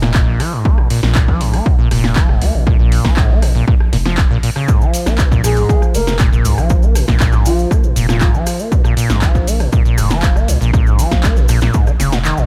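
Acid house at 119 BPM in Bb minor, this trippy, driving excerpt rides a squelchy, resonant sawtooth acid bass riff with overdrive, subtle chorus, tape echo and sidechain pumping over a deep, saturated sine sub bass that also pumps. Meanwhile, an overdriven, up-front electronic kick and a punchy analog drum machine of handclaps, hi-hat, rim click and snare drive the groove. A grainy, mellow cabasa slips into the background at 4.7 seconds, a breathy, flute-like synth lead with lush chorus, delay and vibrato floats through from 5.4 to 8.3 seconds, and the kick drops out for a drum fill at 12.2 seconds in a dry mix.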